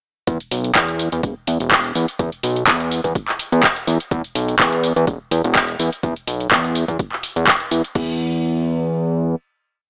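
Bittersweet yet energetic, this short piano house piece opens straight into a drop at 0.3 seconds, driven by a tape-warm, four-on-the-floor electronic kick and a punchy, overdriven analog drum machine up front with programmed closed and half-open hi-hats, handclaps on the backbeat and crash cymbal. Alongside them, a fat, detuned sawtooth bass plays a funky syncopated line up front with tube saturation and sidechain pumping. The drums stop at 8.1 seconds, leaving the mellow bass to carry the final note until 9.4 seconds, all set in light reverb with a small-speaker sound.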